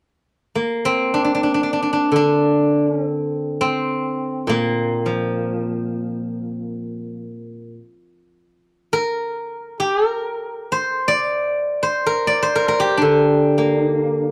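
A ringing steel-string zither, played with fingerpicks, enters at 0.6 s and carries this longing, elegant solo in the Chinese traditional style, ranging from Bb2 to D5. Its silvery tone sits up front in a dry, close 1970s-style studio sound with light reverb, and the passage, cut from a longer piece, ends at 14.3 s.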